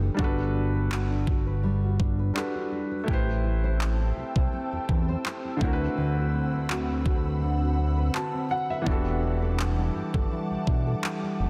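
A fat, detuned analog bass sits up front in this sensual, late-night contemporary R&B excerpt at 83 BPM, its thick sawtooth-and-sine tone carrying a quick filter pluck under an overdriven trap kit of knocking kick and handclaps with a light swing on the 16ths. A clear, intimate grand piano with audible action noise plays the accompaniment while a dark, full-bodied nylon-string guitar adds thumb-plucked arpeggios with finger squeak through a digital delay, moving over Gmaj7, Am7, D13 and Em11. From 3.5 seconds an ethereal, airy pad joins with slow-blooming sustained chords, thickened by ensemble chorus and its own reverb, inside a small-room ambience and a dense, heavily limited master.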